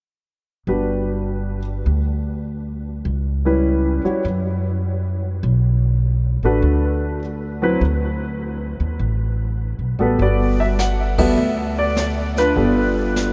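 A dreamy, reverb-soaked mix with a huge ambient tail gives this short fragment of a relaxed jazz piano trio a hazy, floating quality. At 101 BPM in 4/4 with a swung eighth-note feel in G major, an intimate grand piano with audible action noise carries the melody up front, its tone colored by analog chorus and a diffuse ambient delay. Alongside it, a woody, thumpy pizzicato upright bass sits close in the mix, moving through Gmaj7, C#m7b5, a brief chordless stretch, Bm7 and D5. At 10.2 seconds a brushed drum kit enters further back, with dark cymbals, a medium-tuned snare and a boomy kick, as the harmony settles onto Gmaj9 and then G9. The whole band lands a shared accent at 11.1 seconds within the otherwise mellow, warm glow.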